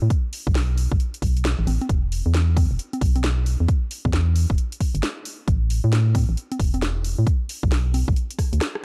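A dark, hollow FM bass with an organ-like tone opens this short cut from a longer two-step UK garage track, its fast attack and decaying notes sitting up front from 0.0 seconds. From 0.1 seconds a punchy, overdriven electronic kick drum joins, layered and placed just as close. A house drum kit fills in around them with congas, a rim click, bright hi-hats and a cracking snare, all pushed into overdrive and sitting lower in the mix. The sixteenth notes carry a swing, giving the groove a bouncy feel, while the mood stays moody. The sound is dry and gritty, with transformer saturation and cassette tape texture, and a short drum fill arrives at 8.4 seconds just before the cut ends.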